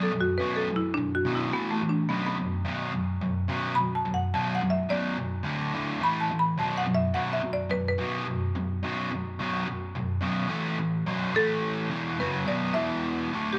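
In a straight 4/4 at 107 BPM, this menacing, heavy rock excerpt in B minor sets a buzzing marimba, its woody, bright hardwood bars struck with medium hard mallets, carrying the melody as a solo through the first 11.1 seconds over an overdriven, double-tracked electric guitar riff sitting up front with spring reverb, the two parts heard as a band playing live in one room with a moderate studio reverb.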